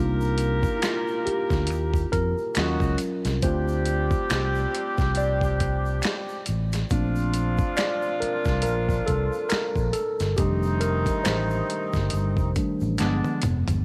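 A worn, slightly out-of-tune tine electric piano takes a sultry solo from the first moment over smooth, tight horn stabs with light vibrato and a dark, round fingered bass, while a distant egg shaker and finger snaps sit in the background and a gritty, overdriven sampler-style drum kit with a thumpy kick pushes this soulful neo-soul fragment forward before closing on a drum fill at 13.0 seconds.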